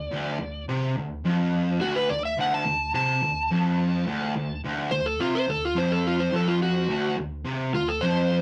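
An overdriven slide guitar leads this gritty, raunchy rock excerpt, playing a warm, fingered melody between F4 and A5 as a solo across the full 8.4 seconds. Beneath it, a bright fuzz guitar, double-tracked, compressed and distorted, picks a low riff from D2 to C3. Both guitars sit up front and play together from start to finish at a straight 106 BPM in 4/4, over a D5 chord. A small room lends moderate reverb, and the rough rehearsal-room sound carries warm saturation. Cut from a longer piece, this short passage hangs on that single power chord.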